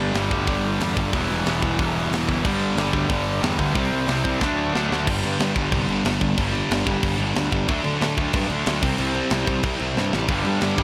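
Energetic and rebellious, this punk rock excerpt charges along at 183 BPM in G major, with a growly, fuzz-laden bass and three distorted guitar riffs: a bright one that drops out at 5.1 seconds and returns briefly at 10.3, a double-tracked high-gain part, and a sludgy, warm one sitting back in the mix. A tight, up-front acoustic drum kit with a tight kick and medium-tuned snare drives the straight 4/4 feel, with crash, hi-hat and fills marking the turn into the second section at 5.1 seconds. The chords move through G, Em, C and D in a dry studio room with little reverb.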